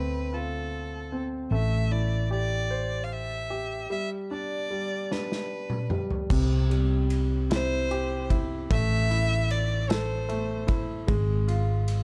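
Opening on a rich, bowed violin melody sung with vibrato over a clear baby grand piano and a round, dark hollow-body electric bass, this tender, heartfelt six-eight pop ballad in C major moves at 50 BPM through chords from Dm7 to a closing Fm/Ab, with a loose indie drum kit entering at 5.1 seconds on a fill with a tight kick and pumping small-room sound, all set in a dark, warm production.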